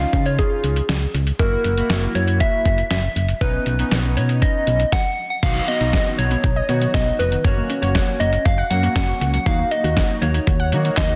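Nocturnal and driving, this synth-pop excerpt is built on a punchy, dark FM bass and a gritty, overdriven sampler-style drum kit with a thumpy kick, handclaps and crash sitting up front. A gentle, keys-like FM lead carries the melody through chorus, phaser and digital delay, over fat, brassy analog synth chords. After a brief stop at 4.9 s, a warbling lo-fi pluck joins in the background at 5.4 s with detuned arpeggios, all under light reverb and a dense, heavily limited master.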